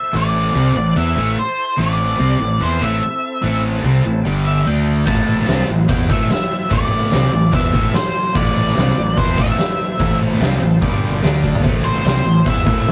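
A heavy, gritty blues rock and southern rock power-trio groove in A minor at 146 BPM, this short cut from a longer piece opens with a dark, fuzzed octave lead guitar melody over a double-tracked overdriven rhythm guitar riff, a growly fuzz bass and an overdriven tonewheel organ holding thick chords in the background through a slow rotary speaker and chorus vibrato. At 5.1 seconds an oversized, low-tuned drum kit comes in up front with a boomy kick and a pumping big-room sound, and it plays a fill at 11.4 seconds as the chords cycle from Am through G5 and D5. Tube saturation and a short booth ambience give the whole take a rough rehearsal-room feel.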